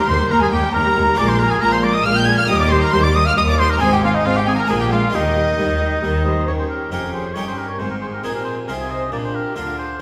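A lively, festive baroque-style concerto movement in Eb major at 136 BPM in 3/4, this short passage is cut from a longer piece with solo episodes. A clear solo oboe carries the melody with light vibrato, joined by a violin section playing sul tasto with a soft attack and an intimate, close sound. A second violin section, rich and focused with a smooth top, sits in the background with its own line and drops out at 9.8 seconds. A brilliant, dry, close-miked harpsichord with octave strings plucks the accompaniment alongside an expressive viola section. From 0.1 seconds a smooth, even double bass section and a distant cello section, both bowed with vibrato, anchor the bass, while a recital-hall reverb gives the ensemble a church or concert-hall ambience as the harmony moves from Eb through Ab and Bb to a new section at 6.5 seconds.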